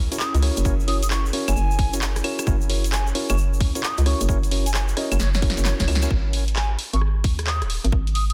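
A hollow, knocking FM bass sits up front under a very quiet, breathy pad on an F#7 chord as this moody, skippy two-step garage passage opens at 132 BPM. It is soon joined by tine electric piano stabs through digital delay, a punchy analog drum machine with claves, handclaps, hi-hat, rim click and snare, a grainy tube shaker in the background, and a tight, layered electronic kick from 0.7 seconds. A reedy baroque flute with vibrato and delay carries the melody from the back of the mix, and after a drum fill and band accent the pad, piano and shaker stop at 6.1 seconds as the harmony moves to G#5, all within a dry, dense, heavily limited master.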